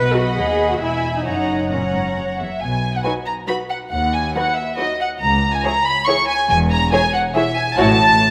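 Graceful and cheerful, this quick classical-period movement for string orchestra moves at 139 BPM in 3/4 with a rubato feel in B major, and is cut from a longer piece. An up-front, pure and floating violin section carries the melody over a darker, woody and more distant second violin line with vibrato, while intimate, close violas with light vibrato fill the accompaniment and a smooth-topped cello section joins a rich double bass section on the bass, every section bowed sul tasto. A moderate concert hall reverb surrounds the ensemble, and at 5.2 s the harmony turns from B major toward C-sharp minor.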